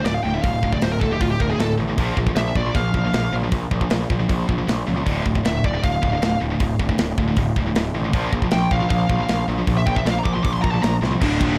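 Driving straight 4/4 at 156 BPM, this aggressive, heavy metal passage sets a dark, high-gain lead guitar solo with delay over two bright, distorted rhythm guitars riffing on D5 and Bb5 in the background, a growly, fuzz-overdriven picked bass and a tight, up-front acoustic drum kit with a rolled-off top that closes on a fill at 11.0 seconds, in a light reverb.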